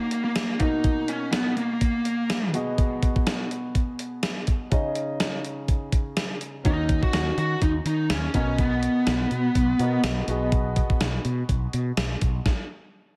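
A distorted, high-gain lead guitar carries the melody up front with a dark, picked tone and digital delay, playing from the start to 2.5 seconds and returning from 6.7 to 10.0 seconds. This is a dramatic, moody 1980s-style pop excerpt at 124 BPM in 4/4, with a light swing on the sixteenths. A concert grand piano with deep bass and long sustain supplies the accompaniment throughout, moving through Ebm7, Bmaj7, Abm7/Cb and Dbsus2. A gated 80s digital drum machine drives the groove with hi-hat, a thumpy kick and a gated reverb snare, its sampler-style sound tape-warm and re-recorded in a small room. A round, direct fretless electric bass joins at 6.7 seconds to add a dark low end. The band stops at 12.5 seconds, and light reverb and digital ambience color the whole recording.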